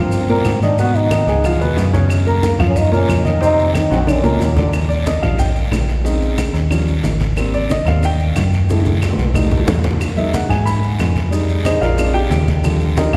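Afro-Cuban jazz at a brisk 182 BPM in Eb major, sunny and sophisticated, where a breathy, cup-muted trombone sings a veiled, whispered melody until 4.5 seconds before an up-front baby grand piano, heard throughout, takes over with a solo from 4.7 seconds over a metallic, fast-attack FM bass, close, low-tuned congas, soft distant bongos, a raspy guiro, grainy maracas and woody claves entering at 0.4 seconds, all bathed in a long cathedral reverb with lossy compression artefacts and drum fills at 3.9 and 8.7 seconds, in a passage cut from a longer piece.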